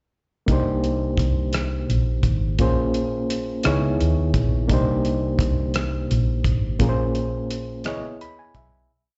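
A slow, sultry six-eight R&B verse in C phrygian at 57 BPM opens at 0.5 seconds with all three parts together. A cloth-damped, thuddy drum kit with a tight kick, hi-hat and rim click sits up front, while a dark, round, foam-muted fingered electric bass slides through a slow line under a reedy, gritty overdriven electric piano. The piano holds rootless chords moving through Cm9, Bbm9 and Dbm9, adding grace notes, harmonic tremolo, plate reverb and slapback echo. The yearning mood is heard as a live gig through the venue's PA with a recital hall's reverb and a dulled top end, and it fades out from 6.8 seconds as the electric piano plays a final short fill at 7.8 seconds.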